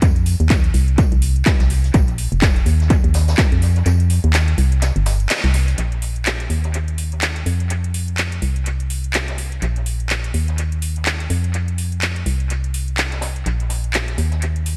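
A feel-good, euphoric piano house cut at 125 BPM opens on a punchy, overdriven electronic kick that stops at 3.5 s, up front beside a hollow, dark, organ-like FM bass that pumps against the beat, while a layered house kit adds metallic hi-hats and handclaps with grit and delay, and a distant, roomy jazz brush kit with a high-tuned snare, hi-hat and tambourine sits in the background, all swung on the sixteenths in a dry, echo-heavy mix that marks a band accent at 5.3 s before moving into a new section at 5.8 s.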